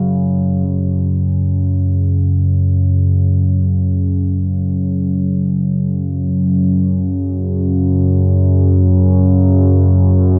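In free time, this dark, ominous ambient piece is carried by a solo analog drone that sustains a low F#5 chord from the start to 10.4 s, its sawtooth and pulse-wave tones evolving through pulse-width modulation, chorus and a diffuse ambient delay. Set up front with a slow attack and long release, the drone blooms into a wet cathedral reverb, while worn cassette tape lends a warbling pitch drift to this fragment of a longer work.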